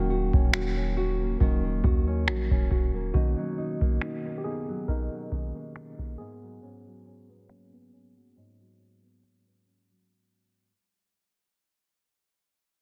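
Contemporary R&B at a slow 69 BPM in G# minor with a lightly swung feel, this moody, longing fragment fades out across its 10.1 seconds as a mellow, clean tine electric piano takes the lead over thumb-plucked nylon-string guitar arpeggios trailed by tape echo, a deep, boomy 808-style bass that sounds only until 3.1 seconds, and an up-front analog drum machine with a deep kick, finger snaps and a softly clipped snare, set in digital ambience under a dense, heavily limited, low-pass-filtered master.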